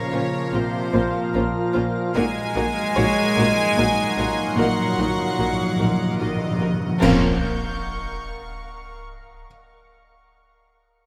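Hushed, sul tasto strings open this uneasy, mysterious suspense cue in 3/4: a clear, floating violin section carries the melody over a darker violin second line, woody violas, a rich cello riff, a second cello section and double basses on the bass, while a high violin texture and a brilliant, very quiet grand piano shimmer above. A mellow French horn section, a tight trombone section and a calm, organ-like pad with ensemble chorus and built-in reverb hold sustained chords. Round, soft-mallet timpani enter with a fill at 2.2 seconds, and at 7.0 seconds dark clash cymbals, concert bass drum and an electronic sub drop strike an impact, all set in a moderate scoring-stage reverb and heard through close, detailed microphones.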